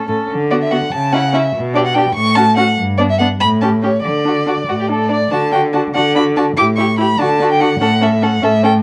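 Restless and stormy, this quick classical-period string quartet movement in 6/8 is a short cut from a longer piece, with a distant, even first violin carrying the high melody from 0.5 seconds over an up-front, focused second violin and a close, smooth viola filling in the harmony. A clear, up-front cello anchors the bass line, and all four bowed players sing with vibrato as the music moves from its opening section into a second at 5.3 seconds. Light reverb and the worn, warbling pitch drift of old cassette tape give the recording an aged, wavering character.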